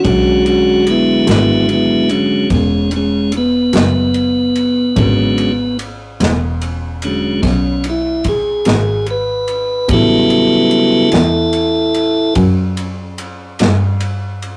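A straight 12/8 pulse at 49 BPM carries this rollicking, soulful slow blues in E mixolydian, cut from a longer piece, where an up-front, piping tonewheel organ with key click and a stopped rotary speaker holds sustained chords, moving from E13 to A13 at 9.9 s before stopping at 12.3 s, over a rich, focused bowed double bass with vibrato and an airy, polished acoustic country drum kit of punchy kick, medium-tuned snare and ride cymbal, captured as a rough rehearsal-room recording with warm saturation and a modest small-room reverb.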